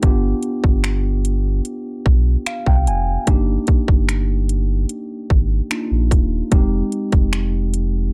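A trap drum kit sets a straight 4/4 pulse at 74 BPM, its hard-clipped kick, metallic hats and finger snaps sitting up front in this short cut from a longer contemporary R&B piece with a longing, sensual mood. Beneath it, a deep sine-and-triangle sub bass with an added octave holds sustained notes from Eb1 to C2, while a mellow, clean tine electric piano carries the chords G7, Ebmaj9 and Fm9 and slips in a brief fill between 2.1 and 3.3 seconds. The production is dark and dry, with little reverb, and the tuning rests slightly low at A4 = 435 Hz.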